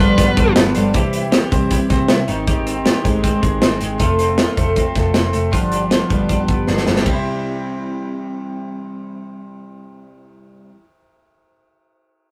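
This short excerpt of jangly indie pop moves in a straight, brisk 4/4, driven by a modern drum kit whose punchy kick, medium-tuned snare, hi-hat and ride sit up front with an airy, polished small-room sound before dropping out after a fill around 6.7 seconds. Underneath, a vintage muted electric bass plays dark, round, foam-muted picked notes, while a picked twelve-string acoustic guitar supplies full-bodied, shimmering octave-doubled accompaniment throughout. A bright, twangy twelve-string electric guitar weaves clean, compressed arpeggios colored by harmonic tremolo. The opening half second brings a brief distorted, bluesy lead guitar note, and a crisp group handclap flickers very quietly around 0.6 seconds. The chords move from G7 to C, through Abmaj7 and F, back to G7 and home to C at 7.1 seconds, giving the passage a youthful, nostalgic glow heightened by a rough rehearsal-room recording in a tight, wet booth.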